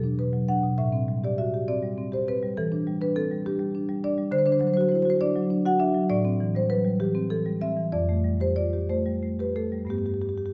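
A moderate recital hall reverb, with about 1.5 seconds of decay, surrounds a single marimba, and the top end is cut off above about 7.6 kHz. This is a contemporary classical piece for solo marimba in 6/8, taken from a longer work and lasting about 10.5 seconds. The tempo sits around 57 to 69 beats per minute in dotted quarters, and the playing is rubato, which gives it a playful, flowing character. Played with medium mallets, the marimba sounds dark and smooth, sitting up front and ranging from the low E2 up to F#5. The harmony moves from Esus2 through Am7, Em7 and D9, returns to Am7, and then moves to Fadd9 before arriving on Gadd9 near 9.9 seconds.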